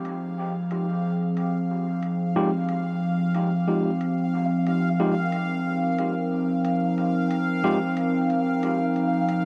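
Ambient dub at 91 BPM in F minor, hazy and spacious, this excerpt rests on a single Fm9 chord held by a warbling, nostalgic pad, detuned, dark and up front with chorus and built-in reverb, while a bright, resonant bubbling texture with random filter steps hovers high on F5. Crisp electronic hi-hats sit in the background through low-pass filtering and dub echo, and from 2.4 to 7.8 seconds a gritty, overdriven tine electric piano plays filtered stabs that trail into dub echo. A huge, wet reverb with a 4.3-second tail surrounds the whole mix.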